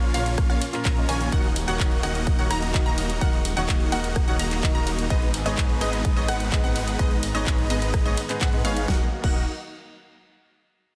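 A punchy, up-front electronic kick enters at 0.4 s and drives this powerful, emotional festival progressive house excerpt at 127 BPM in Eb minor, with the drop running until 8.9 s over chords moving from Bbm to Ebm and Abm. Huge, bright supersaw chords carry the riff beside a thick, saturated detuned saw bass with chorus, both pumping with sidechain, while a pop drum kit with a fat snare, claps, hi-hat, ride, rim clicks and crashes adds studio reverb. A clear, polished baby grand piano plays accompaniment with delay and pumping, a punchy unison pluck spins arpeggios with a filter sweep in the background, and a very quiet, airy, lush unison pad sustains chords beneath a dense, heavily limited master.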